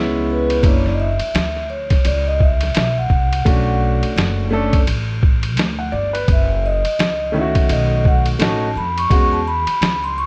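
Cool and smoky, this jazz-hop excerpt sets a mellow, ringing vibraphone solo over a muffled, thumpy lo-fi drum kit with 12-bit sampler grit, a growly, woody upright bass, and an intimate, up-front grand piano with audible action noise, moving through chords like Amaj9, Bm9 and E69 with a lazy sixteenth-note swing.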